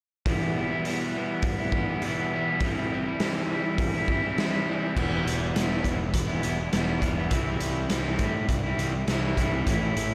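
Over a straight 4/4 pulse, this dark, brooding quiet-loud alternative rock excerpt opens with a slightly broken-up electric guitar picking up-front arpeggios through slapback echo alongside a gritty, punchy garage drum kit of crash, hi-hat, kick and snare, before a growly fuzz bass joins at 5.0 seconds over the Em and C changes, all set in a lush hall reverb with a big arena sound.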